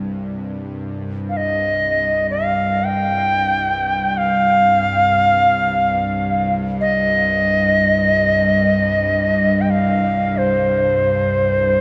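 World meditation music in free time, spacious and haunting, in which a tense, string-like bowed drone with a sawtooth edge, slow attack and its own reverb sounds from the start, joined at 1.3 seconds by an up-front, reedy cedar flute, woody and pure with vibrato, a soft attack, rolled-off highs and a trail of tape echo, the whole set in a wet cathedral reverb with a dark, warm production as a passage cut from a longer piece.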